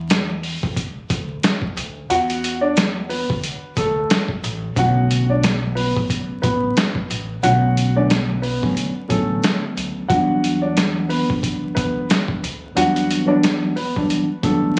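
A growly, woody upright bass opens this moody, dark boom-bap hip-hop excerpt, joined at once by a muffled, pitched-down sampler-style drum kit that sits up front with a thumpy kick, medium-tuned snare and hi-hat over a swung sixteenth-note feel. At 2.1 seconds a present, long-sustaining upright piano carries the melody through tape echo and filtering. From 4.8 seconds a worn, slightly out-of-tune tine electric piano adds cassette-tinged chords moving from Bm7 to Em9, all in a dry mix with vinyl crackle and the studio ambience of a phone recording.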